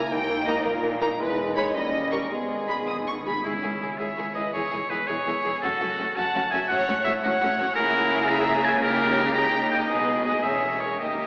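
A wet church reverb and an AM-radio tone wrap this urgent, dramatic orchestral excerpt in 6/8 at 111 BPM, where lush, vibrato-rich violins carry the melody and a second violin section adds a second line over bowed violas, cellos and soft-edged double basses, as warm bassoon, mellow clarinet and very quiet, distant French horns colour the G# minor opening before timpani on medium mallets enter with a fill at 2.3 s and a bright, up-front oboe takes a second line from 3.4 s as the music turns to C# minor.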